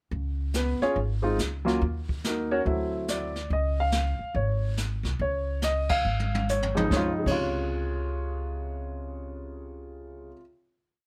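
A swung 4/4 pulse sets this short, complete jazz piano trio piece in motion, with a playful, warm mood and a relaxed lilt on the eighth notes. The upright bass, plucked and woody with a thumpy, up-front tone, plays a two-feel line from the start, while the brushed drum kit sits back in a small, roomy space with dark cymbals, a boomy kick and brush sweeps on the snare. The grand piano enters at 0.6 seconds, present and close, stating a bebop-style theme and filling around it with syncopated comping in rootless voicings. The band hits an accent together at 5.8 seconds, and a drum fill follows before the drums stop at 7.4 seconds. The piece closes on a sustained Dbmaj7 chord from 6.9 seconds, held by bass and piano in a dry, intimate sound with little reverb.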